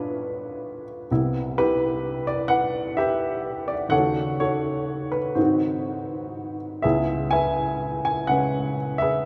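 Solo jazz at 84 BPM in 4/4, swinging and sophisticated, in which a single intimate baby grand piano plays with a swing on the eighths and rubato timing through a brief passage, moving from G7 to Cmaj7 and on through D#m7b5 and G#7 to C#m7; the piano sits up front with a natural, short-sustained tone and audible action noise, set within a cavernous cathedral reverb that rings for 5.4 seconds.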